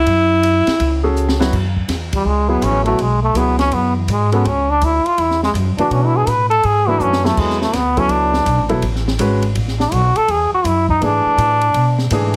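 Heavily compressed, radio-like sound with light reverb gives this modal jazz excerpt in F# minor a cool, intense edge at a brisk 164 BPM, swung in 4/4. A breathy, whispered tenor saxophone opens with a brief, intimate phrase on a single E4, scooping into the note with soft vibrato before falling silent at 1.1 seconds. From 2.1 seconds a trombone with a metal mute takes the solo, its tone buzzy, thin and brilliant, with a light vibrato and soft attack, sitting up front over the band. A woody, growly pizzicato upright bass drives underneath, while a warm baby grand piano comps with short-sustaining chords from F#m9 through F#9sus4 to E9sus4 at 7.4 seconds. The studio drum kit sits far back in the mix, with dark ride and crash cymbals, hi-hat, a high-tuned snare and a boomy kick, adding two short fills along the way.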